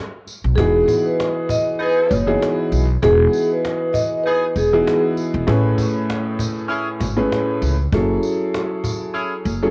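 Boom-bap hip-hop at 98 BPM in E major, warm and nostalgic, this short cut from a longer piece rides a swung 16th-note feel on a snappy cajon with cassette-tape grit, a jingly, distant tambourine and a woody, thumpy pizzicato upright bass sitting up front. After a brief opening break, an intimate upright piano with audible action noise and a mellow vibraphone played with soft mallets enter at 0.6 seconds over Emaj9, the vibraphone's slow motor vibrato ringing until 5.0 seconds, while a distant, tight jazz horn section adds stabs with analog delay from 1.8 seconds. The harmony moves through Amaj7 to F#m9, all set in a small room with the hazy character of a home cassette recording.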